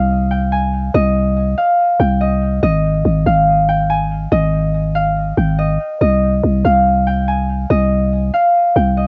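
A mellow, ringing concert harp melody with a cassette-tape colour and a growling, buzzy 808-style bass open together in this brooding, eerie trap cut at 142 BPM in half-time, moving through C minor and Ab chords for about 9 seconds, with the fingerpicked harp and the fast-attack, decaying bass both sitting up front in light reverb on a dull, homemade cassette recording.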